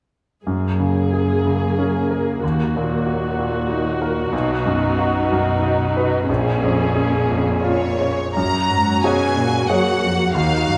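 A rubato pulse in three carries this uplifting, moving cinematic excerpt, cut from a longer orchestral film score, as a brilliant, open grand piano with short sustain and a smooth, even viola section share the accompaniment up front from 0.5 s. Beneath them, an intense cello section with vibrato and a smooth top holds the bass line. At 7.6 s, a lush, focused violin section enters up front with the melody, and the strings sit in the generous reverb of a scoring stage.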